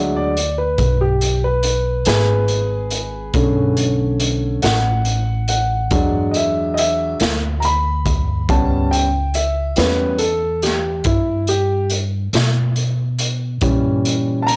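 This slow 12/8 blues rolls along at 47 beats per minute with a rollicking, swaggering feel, the raw garage drum kit coming in at 0.4 seconds with hi-hat, a punchy kick and a medium-tuned snare, saturated and gritty through cassette tape in a small, pumping room. Up front, a grand piano takes the solo throughout, intimate and boxy with audible action noise and long sustain, moving through a rootless E7, Bm7, E9 and C#m7b5 before an A#dim7 near the close, while a woody, growly pizzicato upright bass anchors the low end. Light reverb and a home cassette recording give the whole cut a homespun character, captured from a longer piece.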